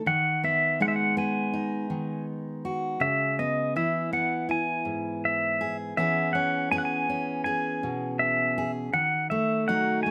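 A straight 4/4 pulse at 81 BPM carries this melancholic, reflective acoustic folk-pop ballad in C# minor, tuned to A4 = 442 Hz. A fingerpicked steel-string acoustic guitar, a jumbo with fresh strings, lays down the accompaniment from the first moment, sounding bright and full-bodied, with audible finger squeak. From 0.1 seconds a clean, twangy electric pedal steel guitar takes the melody high above, played with fingerpicks and slide, using volume swells, compressed and set in a plate reverb. Both guitars sit up front in a light room ambience. The harmony moves through G#m7/D#, C#m7, E6 and D#dim, and the excerpt ends at 10.1 seconds as part of a longer piece.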